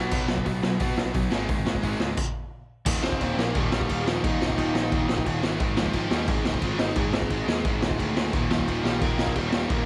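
A dry excerpt of upbeat, energetic punk rock at 176 BPM in straight 4/4, led by a gritty, saturated garage drum kit up front with a boomy kick and rolled-off top, while a growly, punchy fuzz bass and three bright picked guitars (overdriven, tight distorted, and a double-tracked sludgy one) play the riff behind it. The band hits a stop at 2.2 s, and the sludgy guitar drops out until 8.3 s. A biting lead guitar enters at 3.0 s with an overdriven melody and slapback echo over the shifting riff chords.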